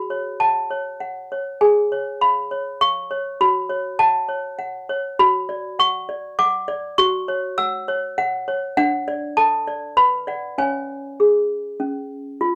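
In a straight 3/4 at 100 BPM, this eerie, fragile classical lullaby in F# minor, cut from a longer piece, features a solo toy piano that sounds clanky, bell-like and slightly out of tune, placed up front in a dry, close 1970s-style studio recording as it moves through chords from F#m and C#7/G# to D, Bm and a closing C#.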